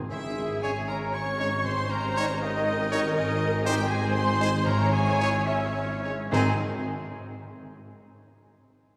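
In a 6/8 at 68-81 BPM to the dotted quarter, with rubato and a slowing from 2.4 to 6.3 seconds, this dramatic yet graceful and spirited fragment of a fast romantic symphonic movement in Ab major unfolds in a long, wet church reverb. A rich, focused violin section carries the lush bowed melody, joined by an airy wooden flute, a distant, roomy oboe and a very quiet second violin line, while a smooth viola section supplies accompaniment. The bass is held by a dark double bass section, a close-miked tuba and a hushed cello section, as a French horn section sustains soft chords, a bright trumpet adds stabs in the background and very quiet, dry timpani sound, with a mellow, ringing, thumb-plucked harp arpeggiating throughout and carrying on alone after the ensemble stops near 6.6 seconds.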